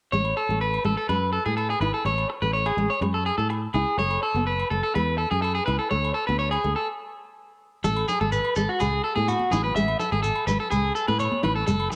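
Sunny and danceable, this short cut from a longer highlife guitar band piece moves at 125 BPM in a straight 4/4, in A major with the tuning set slightly low at A4 = 435 Hz. Up front, an electric guitar at the edge of break-up plays twangy, picked arpeggios with a cassette-tape colour and analog delay. Beneath it, a fingerpicked nylon-string guitar supplies classical-style accompaniment in the background, finger squeaks audible, while a fingered electric bass sounds dark, round and foam-muted. Ringing agogo bells sit quietly behind from the start, and the harmony moves from Amaj7 to F#m7 at 4.0 seconds and D5 at 5.9 seconds, before a stop from 6.9 to 7.8 seconds. When Amaj7 returns at 7.8 seconds, a grainy, band-limited shekere joins, followed at 8.1 seconds by very quiet, high-tuned congas played with soft hands. The whole home cassette recording carries light reverb and a small room ambience.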